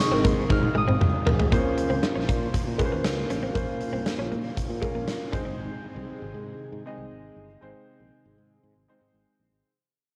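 1980s-style pop in a nostalgic, uplifting mood, cut from a longer piece, where a ringing Celtic harp melody lasts only until 2.0 s over an intimate grand piano with audible action noise, a mellow, very quiet phased organ-string pad, a bright, compressed clean electric guitar riff set in the background, round fretless bass and a punchy, up-front arena drum kit whose fill starts at 0.5 s, before the piece fades out from 1.5 s, all with the lightly reverberant sound of a home recording on cassette.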